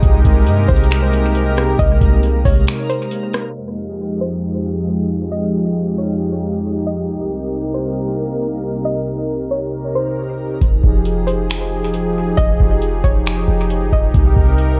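A half-time groove at 136 BPM in 4/4 opens this melancholic, ethereal cloud-rap hip hop excerpt in F minor. A booming analog drum machine sits up front, with a deep kick, metallic hi-hats, finger snaps and rim clicks that carry a small-room character, while a clean, sine-like 808-style bass gives boomy, dark low notes with a fast attack that decay. The bass and then the drums fall away into a break at 2.7 s, and from 3.6 s a filter sweep runs through the middle stretch before both return at 10.6 s, the point where the faint, twinkling granular texture, with its octave-up FM shimmer and built-in reverb, drops out. Underneath, a smooth, detuned sawtooth pad with chorus holds sustained chords up front, moving between Cm7 and Fm9. A soft, round pluck carries a mellow, wave-folded melody with chorus and dub echo, in an echo-heavy, lightly reverberant mix rounded off by a low-pass filter.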